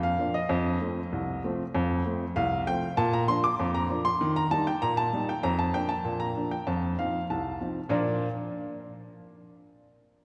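A straight 2/4 pulse at 97 BPM carries this playful, jaunty ragtime fragment in Bb major, cut from a longer piece. A solo upright piano with a woody, intimate tone and audible action noise sits up front, ranging from C2 to D6 and moving through Bb, F7 and Eb before settling back on Bb near 7.9 seconds, and it stops at 8.3 seconds. A wet church reverb with a 3.2-second tail surrounds the piano with the spacious air of a church or concert hall.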